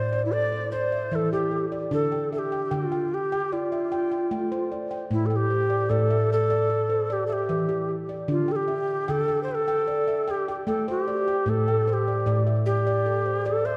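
A breathy, reedy low wooden flute in the Native American style carries a gentle melody with vibrato and a chiffy attack over the ringing, bright nitrided-steel arpeggios of a handpan, both up front and trailed by diffuse ambient delay inside a wet concert-hall reverb, giving this short cut from a longer meditative world piece a hypnotic calm.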